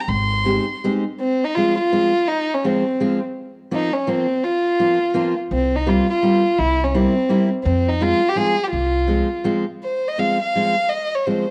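A moderate echo-chamber reverb gives this short cut from a longer musette waltz in F minor a soft, roomy glow, with all three players sitting up front. At 167 BPM in 3/4, the feel is rubato, charming and whirling. A single bowed violin carries the melody throughout, ranging between C4 and C6, dark and intimate, played sul tasto with light vibrato, a soft attack and a smooth top. A fingerpicked steel-string acoustic guitar enters at 0.4 seconds with fresh strings, an auditorium body and an audible finger squeak. A woody, thumpy pizzicato upright bass on gut strings touches in at the very start, then returns at 5.5 seconds on the C7sus4 chord. The harmony moves from Abmaj7 through Fm and Bbsus2 to C7sus4, C7 and back to Fm, with a brief break just before the second section.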